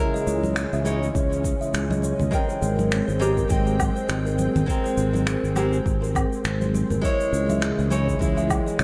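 A dreamy, reverb-soaked mix with a smear of lossy compression artefacts sets a blissful, relaxed sunset chillout mood, in a swung 4/4 that moves between a Dbmadd9 and an Abmaj9 chord that arrives at 2.3 s. Up front, a bright, fingerpicked nylon-string guitar with audible finger squeak carries the accompaniment through a delay, beside a growly, punchy fretless electric bass, while a woody, ringing kalimba spins delayed arpeggios over a silky, warbling string machine that holds chords with chorus in the background. Distant, roomy shaker, finger snaps and woodblock and very quiet hand-struck congas fill in the groove, and a deep, layered electronic kick drum enters at 1.1 s.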